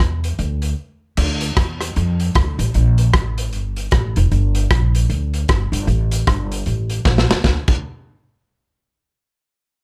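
Ska with an energetic, driving swing, cut from a longer piece, pairs a woody, thumpy pizzicato upright bass with a crunchy, saturated breakbeat kit of dark cymbals and a tight kick, both up front in a dry sound, with a break at 0.8 seconds and a drum fill at 7.1 seconds before both parts stop at 7.8 seconds.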